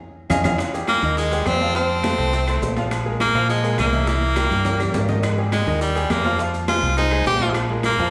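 A drum fill and a full-band accent launch this fiery, driving salsa cut in F minor at 207 BPM, with bright grand piano, a dark, punchy fingered electric bass up front, and a bed of ringing high-tuned congas, metal-shell timbales, quiet low bongos, woody claves and grainy maracas all under way by 0.3 seconds. At 0.9 seconds an edgy, forceful tenor saxophone takes the lead with vibrato, soloing up front over chords moving from Fm7 through Abmaj7 and C7 to Fm9, while another drum fill arrives around 4.4 seconds. The polished piano's long sustain and audible action noise sit inside a wet recital-hall reverb.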